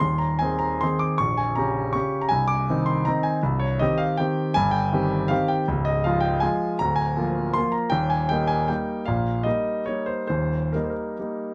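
A lilting three-beat waltz pulse, stretched and relaxed with rubato, carries this graceful, playful classical fragment taken from a longer piece. A solo concert grand piano plays throughout the 11.5 seconds, its clear, polished tone sitting up front with deep bass and long sustain, moving from Ab through Cm9 and Db before settling on Eb. Light reverb surrounds the piano in a dark, warm production.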